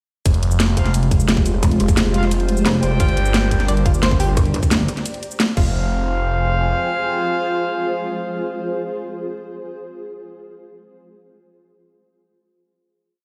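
Opening at 0.3 s on a tight, layered electronic kick, cracking snare, bright hats, cabasa, rim and crash with overdrive, this futuristic, aggressive dark technical drum and bass drop at 175 BPM in F dorian stacks a swirling, phased detuned saw bass and a pulsing pluck wobble bass with changing wobble speed beneath sparse echoing stabs from a classical-style brass ensemble, a moody analog pad with sidechain pumping, a blurred granular cloud pad and a round analog pluck running a 16-step sequence, moving from Fmadd9 to Gm7 and back before the drums stop at 5.6 s and the pads and brass hold a final note in stone room reverb until 9.2 s.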